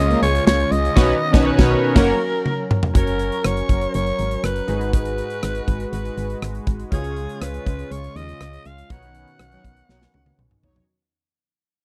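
The recording has a dry, close 1970s-style studio sound, with a polished, up-front acoustic drum kit in a small, airy room. This romantic, nostalgic 1980s-style pop fragment moves at 121 BPM in a straight 4/4 in F# major. A breathy, raspy alto saxophone carries the pop-style solo melody with vibrato and scooped notes. Beneath it, a punchy, round FM bass, detuned sawtooth keys with a warbling chorus, and a smooth pad with chorus and tremolo hold up the chords, which move from C# through Badd9 to F# and G#m7. Bold, fat synth brass stabs sit in the background with vibrato, joined at the start by an overdriven, double-tracked garage guitar that is very quiet and stops at 2.1 seconds. Band accents and a drum fill mark the opening, and the track then fades out from 2.9 seconds.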